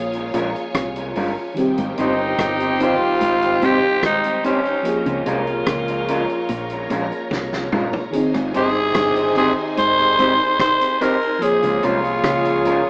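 Lovers rock reggae at 73 BPM in Ab major, this tender, smooth passage is cut from a longer piece and drifts between Db6 and Abmaj7 chords. A growling tenor saxophone carries the melody up front from 2.0 s, raspy and gritty with light vibrato and a touch of tape echo. Behind it, a tight saxophone section and a swirling, warbling string machine, soaked in ensemble chorus, phaser, tape echo and plate reverb, supply second lines, while a lush, dreamy FM electric piano with a pad layer fills out the accompaniment. A slightly broken-up guitar through a small old amp adds lo-fi stabs with spring reverb and echo, and a very quiet, compressed clean guitar plays a low riff. A deep, round fingered bass and a vintage kit with a fat snare and punchy kick anchor the groove, with a drum fill at 7.3 s. The whole mix has a wet room ambience and the rough character of a home demo heard over AM radio.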